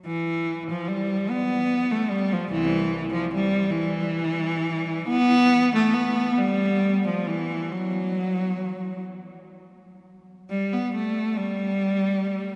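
A long, wet cathedral reverb surrounds a single bowed cello placed up front, its warm, smooth tone carrying a light vibrato. This short classical passage, cut from a longer piece, is nostalgic and lyrical, moving freely in 6/8 with expressive rubato. The solo line stays even from 0.1 to 12.6 seconds, ranging from C2 up to B3.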